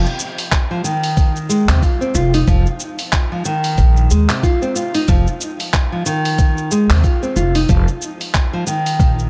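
A swung 16th-note groove at 92 BPM drives this earthy, hypnotic organic downtempo excerpt in F minor, where a gritty, compressed electronic kick hits up front from 0.5 seconds, a dusty soul sampler-style kit of handclaps, hi-hat and shaker sits tape-warm in a large room, a woody pizzicato upright bass on gut strings pumps with sidechain compression, and a fingerpicked classical nylon-string guitar plays arpeggios through tape echo, inside a dark production with light reverb and digital ambience.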